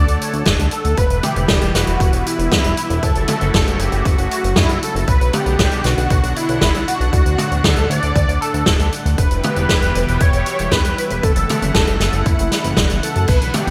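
A thick, bold unison lead with a detuned sawtooth edge and vibrato carries the melody through this nocturnal, moody synthwave excerpt, coloured by ensemble chorus and digital delay. Beneath it, a lush, detuned pad holds sustained chords over a glossy, nasal synth bass with a filter pluck. An up-front acoustic drum kit with a medium-tuned snare and gated reverb enters at 0.1 seconds, and a punchy layered electronic kick joins at 0.5 seconds, all inside a bright 1980s-style digital production.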